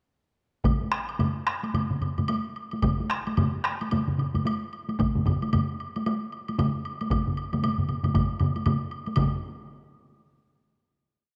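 Ceremonial and powerful, this complete Japanese traditional piece for taiko drum ensemble runs in 4/4 at 109-123 BPM, speeding up from 0.6 to 11.2 seconds with a swung sixteenth-note feel. Two solo taiko drum parts and two taiko ensemble parts, all struck with heavy sticks, enter together at 0.6 seconds; one solo part plays a compressed, saturated repeating pattern while the other delivers taiko phrases in a small room. The ensemble parts split between taiko phrases with a live room sound and a close, dry repeating pattern. A woody woodblock joins at 0.7 seconds with its own repeating pattern, sitting lower in the mix. After the main section, a final hit arrives at 9.2 seconds, and the whole performance is bathed in a lush hall reverb on a homemade cassette recording.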